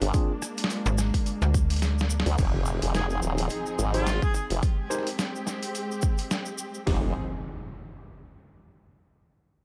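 Swung 16ths at 107 BPM drive this swaggering, playful glitch hop fragment in F dorian, where an up-front dubstep drum kit with a punchy kick and a huge snare is layered over a gritty, overdriven boom bap sampler-style kit, grainy close cabasa and a detuned, chorused formant-sweep wobble bass. A snappy, metallic FM slap bass cuts in at 0.9 s, and an electronic impact lands at 2.4 s as the harmony moves to Fm7. A distant harmonica with light vibrato carries the melody under digital delay, while a bright tine electric piano stabs briefly from the background at the start and returns from 3.9 s, and a veiled, con sordino string section holds lush chords that pump against the beat.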